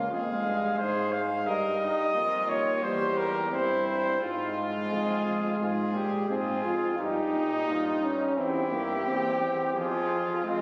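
A solemn, contemplative classical canzona for brass opens with all four voices together at 87 BPM in a straight 4/4: a mellow lead trumpet with light vibrato and a soft attack sits up front, a warm second trumpet weaves a close-miked imitative line beneath it, a clear trombone carries the accompaniment, also up front, and a smooth-topped euphonium anchors the bass. Around 5.6 s the music settles firmly into F minor, with the harmony moving through Fm, Eb/G and C/E before closing back on Fm near 9.8 s. Captured on a phone in the room, the ensemble blooms in a wet church reverb with a long 2.8-second tail, in a passage cut from a longer piece.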